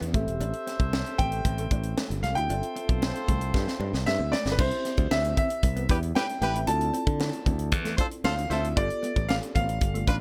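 Polished 1980s jazz-funk pop with a breezy, upbeat straight feel, built on an up-front tight funk drum kit with gated reverb, a high-tuned snare and a fill at 3.5 seconds, a growly, bright fingered electric bass, smooth jazz-style horns playing a second line, very quiet dry congas, a dark fingered guitar riff and a mellow tine electric piano with subtle chorus in the background, while a brilliant grand piano carries the melody from 1.2 seconds over chords moving from Am7 and G13sus4 to Cmaj7, Dm9 and G9, all in a fairly dry mix.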